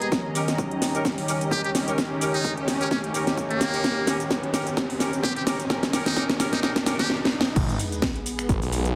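A swaggering, gritty bass house cut at a swung 4/4 pulse opens on an up-front house drum kit of cracking snare, metallic hats, finger snaps, shaker and crash, with a punchy, tape-tinged electronic kick sitting in the background from 0.1 s. Over this build-up a buzzy, thin trumpet with a metal mute carries the melody with vibrato and scooped notes, close-miked and trailed by delay. Tight, clear horn stabs with a vintage pop flavor sound through a low-pass filter and delay, while a bright, evolving resonant pad holds sustained chords with chorus and 12-bit sampler grit. A veiled, distant string section bowed con sordino adds a dark texture beneath, both it and the pad pumping against the kick, as a background riser climbs toward the drop. At 7.6 s the drop lands on an impact and a sub drop, and a thick, swirling detuned saw bass enters up front with phaser and tube saturation. The whole fragment has a heavily compressed, radio-like sound in a moderate digital room.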